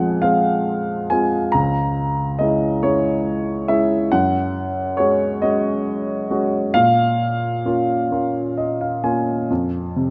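In a rubato 6/8 at roughly 43-47 BPM in dotted quarters, this melancholic, reflective excerpt of lyrical classical solo piano features a worn, up-front baby grand with long sustain, ranging from Db2 to Bb5 through Fm, Dbm, Gbsus2 and Bbm before a piano fill from 8.1 to 9.5 s lands on F5, all set in a moderate concert hall reverb.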